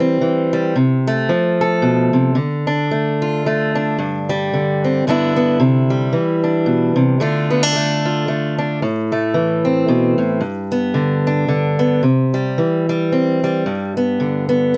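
Folk for solo fingerpicked acoustic archtop guitar, peaceful and nostalgic, moving in a lightly swung 3/4 at 112 BPM in C major, with bright, fresh-stringed tone sitting up front under close, detailed microphones and light reverb as chords drift from C through F/C, Dm, Gsus4 and Cadd9 to Am and G before a brief new passage begins at 12.0 seconds, in this short excerpt cut from a longer piece.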